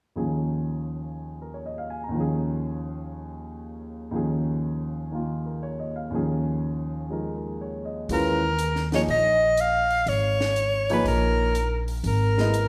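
A warm, natural grand piano opens this fragment of spiritual, cool modal jazz on its own, sounding an Eb9sus4 chord with a swung feel in a reverberant church-like hall. At 8.1 s a clear, breathy soprano saxophone takes up the solo melody with vibrato, joined by a woody, thumpy pizzicato upright bass up front. A dry, compact cocktail kit of hi-hat and high-tuned snare sits low in the mix beneath them.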